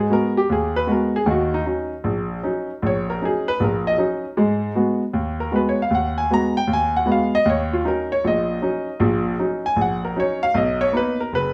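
A clear, present grand piano sits up front and plays alone throughout this cool, moody solo jazz fragment, swinging its eighth notes at 155 BPM in 4/4 and Eb minor. Its short-sustain tone spans a broad range as the harmony moves between Abm7 and Ebm7 before reaching Bmaj7 at 10.6 seconds. A wet studio reverb gives the live, single-room performance a sense of space around the instrument.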